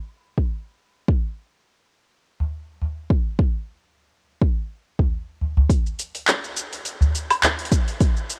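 A worn, cassette-like sheen with warbly pitch drift colours this short downtempo fragment, cut from a longer piece and moving peacefully at 104 BPM in 4/4 with a gentle sixteenth-note swing. A deep, overdriven electronic kick sits up front from the start, joined at 2.4 seconds by a small, up-front udu in a small room with an intimate acoustic touch. At 5.7 seconds the music shifts into a new section as a gritty deep house kit arrives with handclaps, metallic hi-hats, shaker and woodblock.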